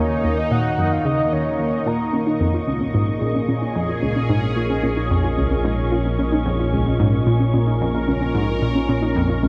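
A straight 4/4 pulse drives this cosmic, mysterious stretch of sequencer-driven ambient space music, cut from a longer piece, where a bright, round analog pluck riff with filter sweep, chorus and tape echo runs over a fat, wave-folded analog bass that fades in, beneath an up-front, resonant sweeping pad holding Ebm7 then Bbm7, while a soft octave-layered lead with vibrato sings only until 2.1 s, a warbling, lo-fi dusty pluck takes up background arpeggios from 2.1 s, and a breathy, wind-like tuned noise texture fades in, all bathed in a huge, dark reverb.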